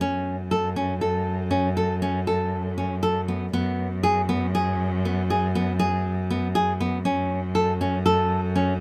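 Contemporary chamber music in an uneven 7/4 metre, this brief, urgent yet pensive fragment sets a full-bodied, fingerpicked nylon-string guitar playing arpeggios, with audible finger squeak, over a bowed cello holding a biting, intense bass line with vibrato, both up front in a close, detailed sound with light reverb as the harmony moves from F#m to G#m7/F# at 3.5 seconds and back to F#m at 7.1 seconds.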